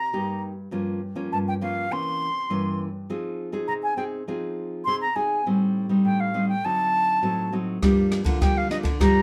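An airy silver flute, with vibrato and tongued notes that sound distant, carries a nostalgic yet lively samba and choro melody in C minor at 101 BPM over a fingerpicked classical nylon-string guitar moving through minor-seventh and altered dominant chords such as Cm7, C7b9 and D7b9. At 7.8 seconds a second nylon-string guitar adds a bass line and an open jazz drum kit joins with a boomy kick, dark ride cymbal and rim clicks. A small, wet room reverb surrounds the parts in this short section, which is cut from a longer piece and ends at 9.2 seconds.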